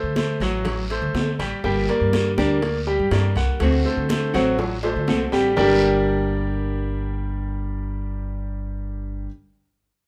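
A short, nostalgic Cuban son and guajira passage cut from a longer piece, it opens with a bright baby grand piano spinning arpeggios up front, its brilliant, intimate tone carrying audible action noise and long sustain, over a woody, thumpy upright bass plucked on gut strings. At 122 BPM in a straight 4/4 in G harmonic minor, the harmony moves between D7 and Gm. From 0.2 seconds a percussion section joins: congas with a thick, high-tuned skin sitting close and dry in the background, very quiet tight bongos played with soft hands, a raspy guiro set at a distance, and ringing metal-shell timbales heard far back in a large room. A dark, small-sounding nylon-string guitar enters at 1.6 seconds, fingerpicking an accompaniment alongside the piano. A drum fill closes the opening section, the percussion drops out at 5.7 seconds, and piano, bass and guitar carry on alone over a moderate large-studio reverb.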